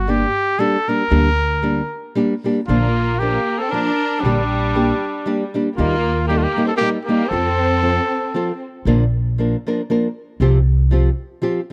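A warm, classical-style solo trumpet leads this proud, festive mariachi passage in Bb major, cut from a longer piece, at 117 BPM in a swung 3/4, over fingerpicked nylon-string guitar with audible finger squeak and a woody, dark pizzicato upright bass, while a smooth, bowed violin section with vibrato joins at 2.7 seconds and drops out with the trumpet at 8.6 seconds, all captured in a dry, close 1970s-style studio sound.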